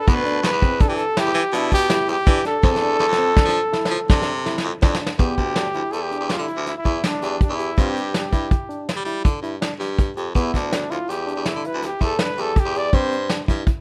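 Progressive instrumental band music in an uneven 7/4 meter, brooding and intricate, cut from a longer piece. A soft-attacked, close-miked trumpet carries the jazz-style melody up front, over barky tine electric piano arpeggios through a combo amp and an edgy, forceful baritone saxophone with vibrato holding down the bass line, while a vintage acoustic brush kit with a punchy kick and rolled-off top sits forward in the mix and plays a fill from 2.6 to 5.2 seconds. The harmony moves through Em7, Fmaj7, G5 and Gsus4, and a moderate plate reverb and small room ambience give the whole a rough home-demo sound.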